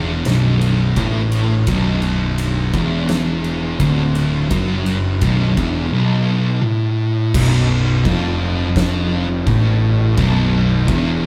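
A straight 4/4 pulse at 85 BPM drives this ominous, hypnotic stoner and doom metal excerpt, where a dark, up-front fuzz guitar riff sits over a second distorted guitar tucked in the background, a round, overdriven picked electric bass, and an oversized low-tuned acoustic drum kit with a boomy kick, fat snare, crash and ride cymbals in a gritty, pumping room, the band heard live together in a large studio with a wet reverb as the harmony moves from B minor to a B5 power chord at 7.3 seconds.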